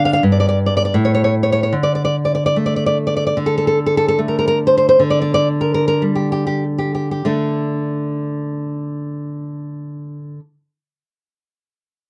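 Passionate and intimate, this romantic fragment of a longer piece for solo classical guitar unfolds in a rubato 2/4, its dark, fingerpicked nylon-string guitar sitting up front under close, detailed microphones with light reverb and audible finger squeak, moving from D5 to G5/D and back to D5 while slowing between 2.6 and 7.3 seconds before the guitar falls silent at 10.4 seconds.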